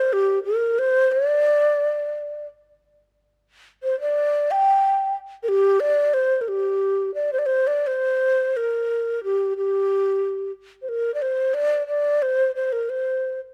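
A breathy, hollow bamboo xiao plays alone, up front and softly attacked with gentle vibrato, in a tender, wistful Chinese traditional passage in G yu mode, moving freely around 89 BPM in 2/4 across its G4 to G5 range, shifting to a new phrase at 8.2 seconds, with close, detailed miking and a light reverb in this brief cut from a longer piece.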